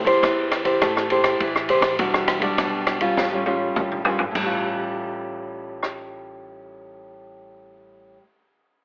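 Samba and choro at 102 BPM in 4/4 with a yearning, nostalgic mood, this short cut from a longer piece sets an up-front, full-bodied, fingerpicked classical nylon-string guitar moving through Am7, Em9 and Aaug7 over a woody, thumpy pizzicato upright bass in the background, while an up-front acoustic jazz kit with dark cymbals, a high-tuned snare and a boomy kick plays a fill from 3.2 to 4.4 seconds and stops at 6.0 seconds, the recording carrying a telephone-like tone and a moderate large-studio reverb.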